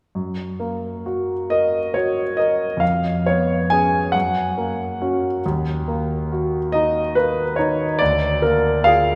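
A solo concert grand piano opens at 0.2 seconds on an F# major chord, setting a nostalgic, dreamy mood for this romantic classical nocturne. The tempo is slow, around 46 beats per minute counted in dotted quarters, in 6/8 with free, rubato timing. The piano sounds intimate and natural, placed up front with deep bass and audible action noise, and its range stretches from D2 up to G#5. The harmony moves from F# through C#7/E# and back to F# before passing to D#m, then turns to A#7/D at 8.0 seconds. A generous church reverb surrounds the instrument, and the passage, cut from a longer piece, ends at 9.2 seconds.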